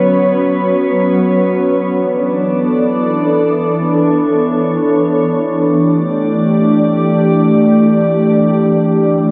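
Hip hop in free time, this short excerpt cut from a longer piece has a hazy, spacious mood. A lone glassy FM pad carries the whole passage from start to finish, sitting up front and spanning D3 to D5. Its tone is ethereal yet dark, with a slow attack, long sustained notes and a lingering release, thickened by ensemble chorus and bathed in its own built-in reverb and an analog delay. The harmony drifts through suspended chords, moving from Bsus2 to E7sus4 at 1.8 seconds and settling on A7sus4 at 5.4 seconds. The mix carries light reverb and leans heavily on echo, giving the sustained pad a floating, open quality.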